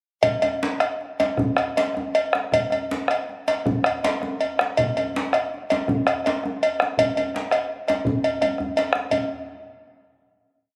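From 0.2 s a metallic cowbell bell pattern up front, a deep, dark bombo heard close and dry, and a warm, compressed, saturated djembe played with soft hands open this earthy, powerful West African drum ensemble piece in a straight 12/8 at 104-118 BPM, speeding up throughout under a phone-in-the-room recording with wet recital hall reverb, before a drum fill at 8.4 s leads to a final hit at 9.1 s.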